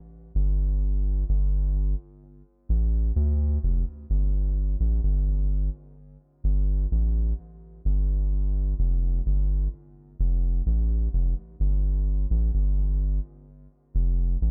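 A soft dub sub bass enters at 0.4 seconds and carries this short reggae fragment entirely on its own. Its round, triangle-and-square-wave tone has a fast attack and sustained notes, sitting deep between F1 and D2. The part is placed up front in a dry sound with very little reverb. At a slow 64 BPM in a straight 4/4, the mood is deep and meditative. The music shifts into a new section at 4.1 seconds and continues until the bass stops at 14.5 seconds, cut from a longer piece.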